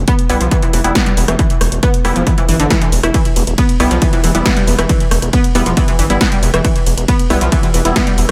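Hypnotic and relentless, this short cut of driving peak-time techno at 137 BPM in E phrygian rides an up-front, overdriven layered kick and a gritty, nasal synth bass with tube saturation and sidechain pumping, while a round, detuned analog pluck riff with chorus and delay, a punchy analog drum machine of hi-hat, ride, rim click and snare re-recorded in a large room, and crisp ring-modulated wavetable chord stabs tucked in the background all sit over a single Em chord in light digital ambience.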